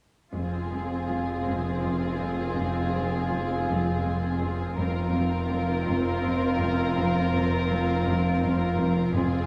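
Eerie and tense, this suspense film-score fragment in 3/4 sets a veiled melody from a muted violin section over a soft-attacked second violin line and close, lush violas, while one dark cello section plays a riff and another holds the bass beside warm double basses in the background, with a deep sine-and-triangle sub bass drone underneath, in a moderate scoring-stage reverb.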